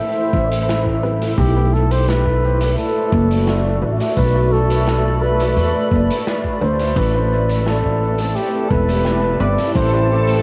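Meditative and hazy, this ambient dub excerpt moves at 86 BPM in A dorian, cut from a longer piece, with a veiled, bucket-muted trumpet singing a dark, lightly vibratoed classical-style solo through dub echo, plate reverb and cassette grit over a cloudy, evolving granular pad that drifts across Am7, Bm7 and Am9. Up front, a woody pizzicato upright bass with tube saturation anchors the groove, joined by a muffled, thumpy sampled kick in the background and an oversized low-tuned kit whose fat, gritty snare and hi-hat pump in a big room, soaked in dub echo. A very quiet filtered dub chord stab adds detuned sawtooth plucks with chorus, and at 8.4 seconds a reversed, dreamy swelling texture rises in the background, all captured as a lightly reverberant home cassette recording.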